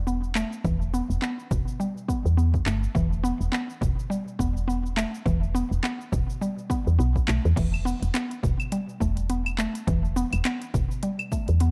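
Hypnotic and meditative, this organic downtempo cut from a longer piece moves at 104 BPM in E minor with a gently swung sixteenth-note feel, a soft, round FM bass sitting up front from the start while a mallet-like synth pluck spins percussive arpeggios through chorus and digital delay. An organic electronic drum kit, tape-warm and re-recorded in a large room, brings crisp hats, cabasa, claves, handclaps and crash cymbal, and a punchy, overdriven electronic kick enters at 0.6 seconds. The production is dark with light reverb, the woody timbres of bass and pluck giving the whole a close, earthy glow.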